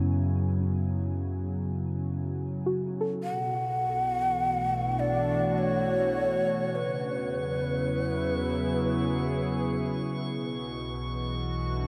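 A breathy, hollow shakuhachi carries the melody in this weightless, luminous ambient passage, entering at 3.2 seconds up front with vibrato, tongued notes and a soft chiff, its mellow bamboo tone trailed by tape echo. Beneath it, a smooth sawtooth analog pad holds sustained chords from the start, opening under a filter sweep as the harmony moves from F#m9 to Bm, Eadd9 and back to Bm. A soft, round pluck spins chorused arpeggios with tape echo through the opening seconds before falling away at 4.1 seconds. A deep, dark analog bass anchors the slow 3/4 pulse at 51 BPM and fades in from 3.2 seconds onward. From 3.9 seconds a bright, glassy texture of drifting overtones hovers high above the pad, and a huge, wet reverb hangs around the whole ensemble of this excerpt from a longer piece.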